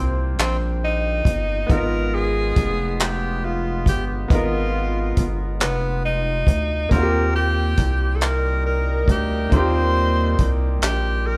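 Slow six-eight R&B with an intimate, tender mood, where a breathy, whispered tenor saxophone carries the melody up front with vibrato and scooped notes over a clear baby grand piano (its action noise audible), distant horn-section stabs, a rubbery, bouncy square-wave bass, and a cloth-damped, thuddy drum kit of handclaps, hi-hat and tight kick that enters at 0.4 s, all shared in one large studio room as the harmony moves from Eb6 to Abm6 and back.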